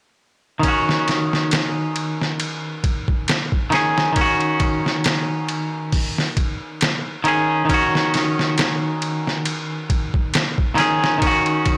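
Blown-out and overdriven, with a light reverb, this brooding, hypnotic trip hop excerpt from a longer piece has a sampler-style drum kit and a semi-hollow electric guitar both entering at 0.6 seconds and playing up front until 11.8 seconds. The pitched-down, compressed kit pairs a thumpy kick and medium-tuned snare with hi-hat and ride cymbal in a tape-warm, swung groove. The bright, clean, picked hollow-body guitar carries harmonic tremolo, 12-bit sampler grit, tape echo and a low-pass filter sweep as it outlines an Ebm7 chord.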